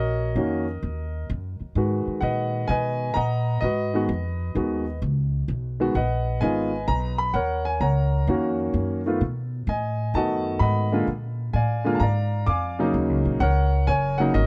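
Dry and close in the manner of a 1970s studio session, this short cut from a longer jazz piano trio piece sits in a small room where both players feel up front for the full 14.5 seconds. At 129 BPM in a swinging 4/4 in E-flat minor, the concert grand carries the smoky melody with a smooth, vintage tone, deep low end and long sustain. Beneath it, the upright bass plays pizzicato on gut strings, woody, dark and thumpy, as the harmony moves from Ebm7 through Abm7 and back to Ebm7, then on to B7 and Bb7 before settling again on Ebm7.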